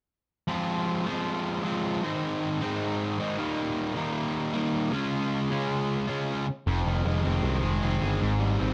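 A straight 4/4 rock pulse drives this restless, moody fragment of a longer piece, with a bright, double-tracked fuzz guitar riff up front from 0.5 s over a chord run of Fm, Ab, Eb and Db. At 6.7 s a growly, punchy picked electric bass joins as the harmony shifts to Fm7 and then Abmaj7. The production is dark, with moderate studio reverb giving the parts a modest sense of room.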